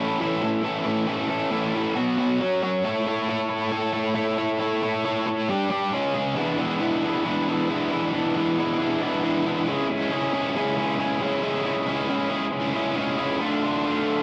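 Jangly and carefree, this short rock piece is cut from a longer work and rides a straight, steady 4/4 pulse. A single raw garage guitar carries it alone from 0.0 to 14.2 seconds, an electric part that is picked, overdriven and double-tracked, sitting up front with a bright bite. Its range runs from E2 to D5 as it moves through a loose progression of A, power chords on B and F#, back to A, power chords on G and C#, then E7 and C#m, before landing on Dm at 13.4 seconds. The guitar carries a cassette-tape coloring, and the whole track has the homespun character of a home recording on cassette. A moderate booth ambience with a short decay keeps the sound close and unpolished.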